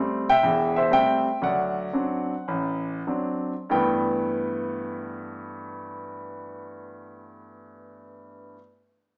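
A clear, up-front concert grand piano with deep bass plays relaxed, swinging solo jazz in G major at 91-129 BPM in 4/4, slowing down over the first 3.7 seconds as Am7 and D7 resolve to a G69 chord, its natural tone set in a large studio's moderate reverb with a small-speaker sound, in this fragment cut from a longer piece.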